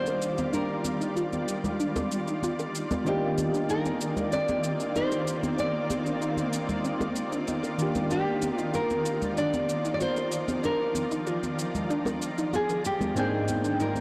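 Warm and relaxed, this sunset chillout passage, cut from a longer piece, moves at 95 BPM in a straight 4/4 in Eb major, drifting through Ebmaj9, Cm11/Eb and back before landing on Abmaj9#11 at 13.2 seconds. A fingerpicked nylon-string guitar carries the melody with a deep classical tone, fresh strings and the odd finger squeak, trailed by digital delay and shimmer reverb. Beneath it, soft electric-piano-like synth keys give mellow, decaying chords coloured by chorus and phaser, while a shimmering ambient pad holds ethereal, detuned sustained chords with an octave-up shimmer and a granular edge. A dark, rounded pluck plays quiet arpeggios in the background from 0.5 seconds under a filter sweep, and from 0.1 seconds close, ringing bongos and congas keep time alongside a tape-toned electronic cabasa. The whole mix sits in a lush hall reverb yet comes across blown-out and overdriven, giving the gentle material a saturated, hazy edge.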